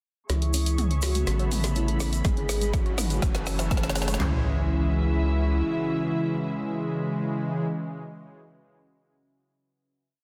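Dark and dramatic, this short melodic techno piece is a single build that resolves onto a held final chord, moving through C#m, Aadd9, G#m and F#m7 before landing back on C#m at 4.2 s. A bold, fat analog synth brass carries the repeating riff melody in octaves with chorus, vibrato and tape echo, shadowed an octave lower by a very quiet, smooth supersaw, while a brassy analog pad punctuates with sparse, echoing close-voiced stabs roughened by 12-bit sampler grit. Around them, muted con sordino strings hold veiled, distant chords, a soft round pluck runs a 12-step arpeggio loop that drifts against the bar until 4.4 s, and a deep, nasal analog bass sustains the roots up front until 5.6 s. The deep house kit brings woody snare, dark programmed hats, toms and a drum fill, joined from 2.2 s by a second layer with a punchy four-on-the-floor kick and handclaps, while a grainy tube shaker plays hand-played sixteenths in the background. 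Filter sweeps move across the arpeggio, brass and pad during the build, a very quiet riser and impact mark the transition, and a moody, wave-folded ambient pad with ring modulation enters at 2.6 s to linger under the last chord. The mix sits in a moderate recital hall reverb with a dense, heavily limited modern master, and the pumping sidechain gives the melodic and bass parts a steady breathing motion.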